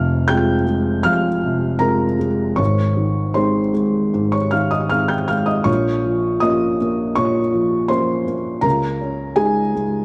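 A moderate plate reverb with a 3.0 s tail surrounds a lone felt-muted upright piano, which sits up front with a boxy, intimate character and clearly audible action noise. This is neoclassical minimalist piano in 4/4, played with a rubato feel and carrying a wistful, melancholic mood. The piano plays solo throughout the 10 seconds, its dark, mellow tone spanning F1 to G6, and a slapback echo is added to it. The harmony moves from Fm to Ab, then to Bbm, and arrives on Dbsus2. The passage is a short cut from a longer piece.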